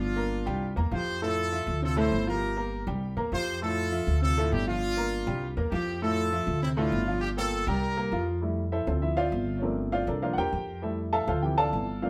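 A punchy, brilliant horn section states the melody over clear upright piano and a thumpy, gut-strung pizzicato upright bass in this joyful, danceable Latin track at 200 BPM in F major, cycling through Gm7, C7sus4, Fmaj7 and Dm7 in a live-room band sound with wet studio reverb, until the horns stop at 8.3 seconds and the piano takes a solo from 8.4 seconds to the close of this fragment of a longer piece.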